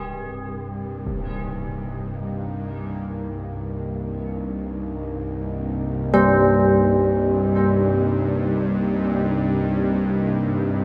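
Steeped in a cavernous cathedral reverb, this dark ambient drone excerpt in C minor drifts in free time over a held Cm7, with clangorous bronze church bells ringing arpeggios up front through diffuse delay, a tense, string-like bowed drone with vibrato rumbling low, a detuned, evolving sawtooth pad sweeping through sustained chords with chorus, and a huge, bright impact sounding in the background at 1.1 seconds.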